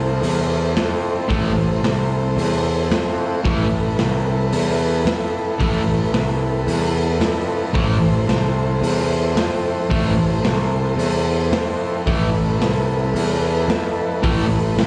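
A mellow combo organ with heavy vibrato holds sustained chords over a growly, overdriven fuzz bass from the start of this raw, gritty garage rock piece at 112 BPM in A minor, with a saturated drum kit of hi-hat, punchy kick and snare joining at 0.2 seconds and a bright, double-tracked fuzz guitar riff pushing up front from 1.3 seconds, all heard as a live gig through the venue's PA with moderate club reverb and a cassette-tape character.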